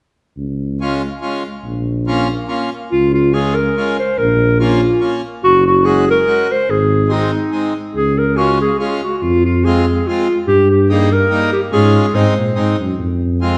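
This alpine folk excerpt for a dance band has a jolly, festive character, moving at 142 BPM in a lilting 3/4 with a swung, loosely rubato feel in Db major. A dark tuba opens the bass line at 0.4 seconds, its soft attack, smooth top and light vibrato giving the low end a rounded, classical poise up front in the mix. The accordion joins at 0.8 seconds with reedy, hollow accompaniment, close-miked and dry so its chords sound full and near. At 2.9 seconds a mellow clarinet takes the melody, played in a classical style and sitting prominently ahead of the other parts. The harmony cycles through Db, Bbm, Gbsus2 and Ab before moving through Fm, Eb/G and Abadd9, while a recital hall reverb lends the whole a resonant, churchlike space.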